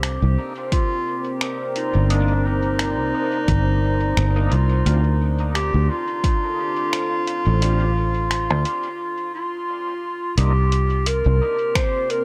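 Ambient dub at 87 BPM with a hazy, meditative swung-sixteenth feel in C dorian, this fragment of a longer piece sets a distant, roomy clarinet melody with dub echo over a deep, detuned, warbling pad with chorus and built-in reverb, a round, foam-muted fingered electric bass up front, muffled tape-warm sampler-style finger snaps and hi-hat carrying dub echo, and a deep layered electronic kick that drops out at 6.4 s, while a very quiet, gritty overdriven tonewheel organ with key click and slow rotary adds stabs from 2.1 s, moving from Cm9 to Dm7 before a break at 9.0 s and a return to Cm9 in an echo-heavy mix.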